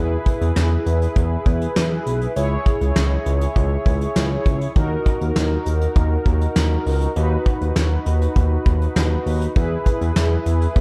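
A dark production with light reverb frames this short synth-pop excerpt at 100 BPM in 4/4, its nostalgic yet bright mood carried over a chord cycle of E, C#m, D#m and B/D# returning to E. Mellow synth brass with a round, detuned sawtooth tone, a filter sweep and chorus holds sustained accompaniment, while a smooth, saturated synth bass blending sawtooth and square waves sits up front with vibrato and an evolving character. A soft brush drum kit enters at 0.3 s, acoustic and roomy with a fat snare, tight kick and hi-hat, its rolled-off top heard in a small room.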